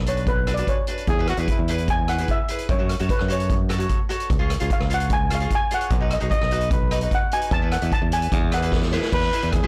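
A straight 4/4 calypso groove at 149 BPM drives this festive, bouncy passage, with an up-front street-band drum kit (boomy kick, softly clipped snare, hi-hat, rim click and crash) and a bright, growly fingered electric bass with tube saturation beneath a crisp, picked cavaquinho over chords running from Bm through E, F#m, C# and B. A shimmering lead steel pan, struck with medium rubber sticks and given a slapback echo, carries the melody as a solo, while a dark trumpet with light vibrato and scooped notes adds a jazz-style second line briefly at 1.1 seconds and again from 6.3 seconds. The dry recording sounds blown-out and overdriven, and a drum fill arrives at 8.7 seconds.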